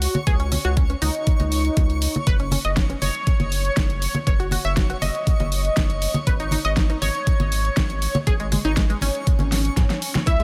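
Progressive house with a bittersweet, expansive mood, built on a tight, detuned sawtooth synth arpeggio with chorus and delay, a round, deep analog bass, and a twinkling granular texture whose octave-up shimmer carries its own reverb, all breathing with sidechain pumping over C#sus2, F#5 and G#5 chords. An overdriven, knocking electronic kick sits up front from 0.3 seconds alongside a layered pop kit with a fat snare and hats, plus close, dry, bright congas and cowbell. A drum fill arrives at 9.8 seconds, and a thick, bold unison lead with vibrato enters on a single high note at 10.3 seconds in this dry-sounding cut from a longer piece.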